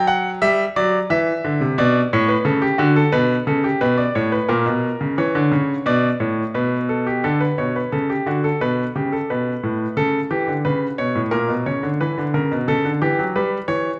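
Solemn and contemplative, this baroque-style two-part invention for solo grand piano moves at 88 BPM in a straight 4/4, tuned slightly high with A4 at 441 Hz. The piano sounds bright and polished, placed up front and intimate, with audible action noise and long sustain, and it spans from A2 to F#5. The harmony opens on E minor and passes through B minor, A9 and A# minor before the music turns at 7.2 seconds toward D major and G over B. The closing stretch moves through C# diminished and A# diminished chords, ending on A7 over C# as the cut from a longer piece stops at 13.9 seconds. A wet recital hall reverb with a 1.5-second decay surrounds the instrument, and the top end is rolled off above 10.9 kHz.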